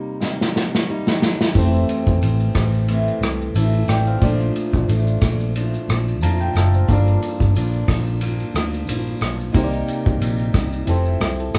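Vintage muted fingered electric bass sits up front in this dreamy, hazy indie and bedroom pop excerpt, its dark, foam-muted tone round and punchy under a relaxed 90 BPM groove in 4/4 with a light swing on the sixteenths in F major. An acoustic drum kit, also up front, opens with a fill played with bundle sticks from 0.2 seconds, bringing in a tight kick, a medium-tuned snare, rim clicks, ride cymbal and shaker. A fingerpicked steel-string dreadnought acoustic guitar carries the accompaniment from the very start with a gentle warble of pitch drift. Soft, mellow synth keys with an electric-piano character and a chorus shimmer enter at 1.5 seconds and take a short fill at 5.9 seconds. A jingly tambourine sits close and dry in the background. The harmony drifts through Cm7, Fmaj7, Bbmaj7 and Gm7 in a lightly reverberant room, giving the sense of a band playing live together.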